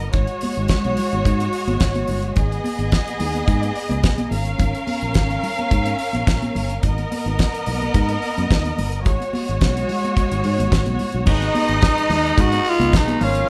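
A lightly reverberant, live-in-one-room sound frames this sultry, danceable disco excerpt in G# dorian at 108 BPM, with the band tuned slightly flat of standard pitch. From the start, a lush, bowed symphonic string section sits up front with focused vibrato, carrying a second line over a round, foam-muted fingered electric bass. A damped 70s drum kit, tight in the kick and fat in the snare with dark cymbals, drives the groove on crash, hi-hat, kick and snare, while high-tuned congas with a thin, damped skin patter softly in the background. The harmony moves from C#sus4 over G# through G#m, a rootless Gm7b5, Bmaj7 over G# and C#7sus4 over G#. At 11.3 seconds the music lands on G#m7 as a raspy, growling tenor saxophone takes the melody, breathy and jazz-styled, alongside a gritty, overdriven tonewheel organ holding sustained chords through a slow rotary speaker.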